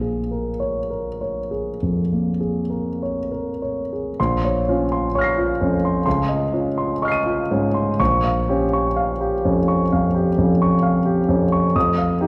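Mysterious and nocturnal, this impressionist solo piano fragment in Bb minor drifts with rubato at 48-67 BPM, a short cut from a longer piece. A concert grand carries it alone, intimate and up front, with deep bass, a polished tone and audible action noise, ranging from Bb1 to Eb7 as the harmony moves from Bbm7 through Dbmaj9 to Bbm6 before falling away at 11.8 seconds. A wet recital hall reverb, 1.4 seconds long, surrounds the piano with the air of a church or concert hall.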